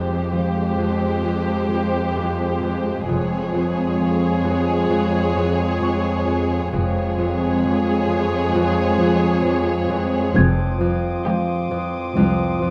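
This eerie, ominous stretch of suspense film score opens with nearly the whole ensemble sounding together: muted chamber violins carry a narrow melody between C5 and Db5 while a muted studio violin section holds a lush second line just beneath, and a muted symphonic viola section sits in the background on a low Ab3. A mellow, ringing concert harp plays a fingerpicked riff up front between F2 and F3, anchored by a muted chamber double bass section on F1 and a muted symphonic cello section with light vibrato moving between C2 and F2. A small celesta adds a bell-like, airy texture across a high range, very quiet and delicate over the veiled, con sordino strings. The music moves slowly at 66 BPM in a straight 4/4, resting on a single Fmadd9 harmony that keeps the tension unresolved. Near 10.3 s a second muted chamber violin section enters with a soft-attack texture high between C6 and Eb6, and the double basses stop at 11.1 s while harp, cellos and celesta continue to 12.7 s. 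Close, detailed microphones and a moderate scoring stage reverb give this fragment of a longer piece a dark, shadowy atmosphere.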